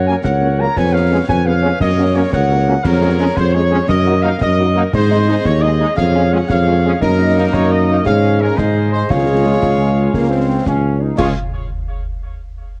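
In a lilting 6/8 stride, this rousing, proud wind-band march passage is carried by a distant, roomy trumpet section on the melody, while a clear woodwind section with light vibrato traces a second line, both set in plate reverb and tape echo. French horns and close-miked trombones hold warm, tight chords in the background, the soft-attacked tuba sits up front on the bass, and concert snare, bass drum and dark clash cymbals keep a close, dry beat from 0.2 seconds. The whole sound has the worn, warbling pitch drift of old cassette tape, and the harmony settles home on the tonic around 9.1 seconds just before the cut.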